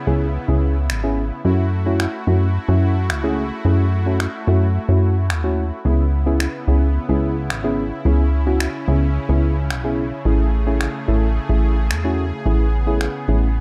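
A punchy, funky analog bass with a detuned, filter-plucked bite anchors this bittersweet yet confident dance-pop excerpt at 109 BPM in C# minor, set under a deep, nasal chord stab thickened with chorus and a smooth, sustained supersaw pad, while overdriven, layered electronic finger snaps sit up front from 0.9 seconds as the harmony moves through C#m7, F#m7 and Amaj7 in a dark, warm digital ambience.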